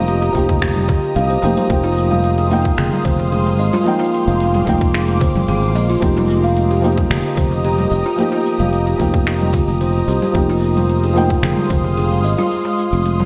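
Mystical and earthy, this organic downtempo excerpt pairs a boxy, felt-muted upright piano with audible action noise and a pumping, chorused pad, while a buzzing, woody kalimba arpeggiates through delay over a growly, up-front fretless bass, a tight tape-warm electronic kick, congas, snaps, crisp hi-hat and shaker, and a very quiet metal-shell darbuka, all steeped in a dreamy plate-reverb haze.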